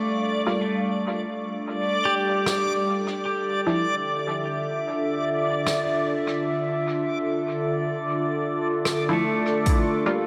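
A warbly, nostalgic pad sits up front in this hazy ambient dub excerpt, holding lo-fi, detuned chords colored by chorus, phaser and its own reverb. The tempo is a relaxed 75 BPM in 4/4 in D minor, with a light swing on the sixteenths, and the harmony moves from G7(no3) to Dmadd9 before landing on Gm7. A bright, twangy pedal steel guitar plays arpeggios through tape echo, picked with fingerpicks and carrying volume swells and slide. A dreamy, reversed granular texture swells on a high D, while a muted, filtered dub chord stab appears in bursts with dub echo. A soft-mallet drum kit of hi-hat and rim click enters at 2.5 seconds with a natural hall sound, and a deep electronic kick lands at 9.7 seconds, all wrapped in a huge ambient reverb.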